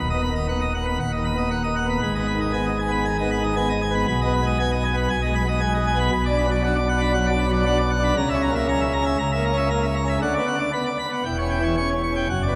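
A pipe organ on full plenum carries this dramatic, majestic classical toccata alone for its 12.6 seconds, a passage cut from a longer piece. Its mixtures give a brilliant, full baroque voicing with audible chiff on the pipes, and the instrument sits up front while spanning D#1 to C#6. The music moves at 117 BPM in a straight 4/4, starting on B/D# and G# minor before settling into B minor at 6.1 s, with diminished chords adding tension toward the close. A wet church reverb with a 3.3-second decay surrounds the sound, and lossy compression artefacts are audible in the recording.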